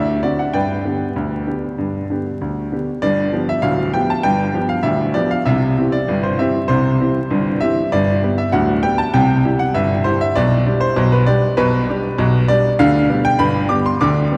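A clear, slightly worn grand piano opens this cheerful, jaunty ragtime fragment, heard up front and alone from 0.0 to 14.4 seconds. It moves at 98 BPM in a straight 2/4 in G major, spanning a range from D1 to D6. The harmony starts on D7 before settling on G, then passes through G7, C and G/B on its way back to G, with a new section beginning at 3.0 seconds. The piano keeps a natural tone while sitting in a long, wet cathedral reverb of about 4.5 seconds, as though played in a church or concert hall. A layer of vinyl crackle lends the recording an aged character, and the clip is cut from a longer piece.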